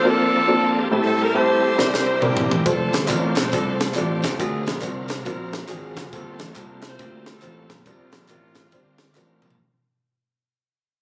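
Captured on a phone in a small, club-like room, this hopeful, reverent uptempo gospel passage at 138 BPM swings along as an up-front, close-miked saxophone section carries a clear, vibrato-laden jazz melody over intimate grand piano with audible action noise and a shouting, lightly overdriven tonewheel organ with key click, chorus vibrato and slow rotary speaker, before a crisp fusion drum kit with a high-tuned snare enters with a fill at 1.8 s, punchy slap bass and background tambourine with group handclaps join at 2.7 s, and the organ adds a fill from 8.7 s as the whole passage fades.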